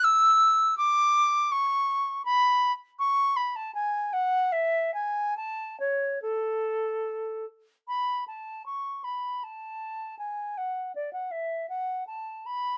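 Heard close and in fine detail with almost bare acoustics, this short cut from a longer classical piece is a baroque-style fantasia for solo silver concert flute. The flute sits up front, its metallic tone pure and straight, with crisp attacks that give each note a clean edge. The mood is flowing and radiant, the line moving in triple metre shaped by expressive rubato. Ranging from A4 up to E6, the flute plays alone from start to finish, 12.8 s in all, and its opening idea comes round again at 7.9 s.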